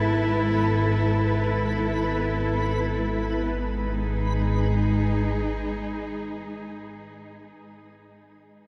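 Dark ambient drone in free time and G# phrygian, this unsettling, ominous excerpt sets a bowed, woody cello section holding lush sustained chords with vibrato under shimmer reverb against an up-front analog drone of sawtooth and pulse waves with chorus, while a reversed, swelling granular texture glimmers brightly in the background until 3.6 seconds, all bathed in a huge, wet reverb.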